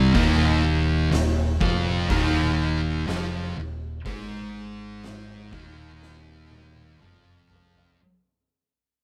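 Two thick fuzz guitars open this brooding, hypnotic stoner and doom metal excerpt at a slow 61 BPM in straight 4/4. One distorted, picked riff sits up front with a warm tone, a darker twin rides in the background over an Ebsus24 chord, and a bright, amped fingered electric bass with overdrive plays beneath them from the start. An oversized, low-tuned acoustic drum kit with a fat snare and punchy kick sounds saturated and gritty in a stone room and plays a fill from 6.0 to 8.0 seconds, while the band, playing live together with light reverb, fades out across the whole passage.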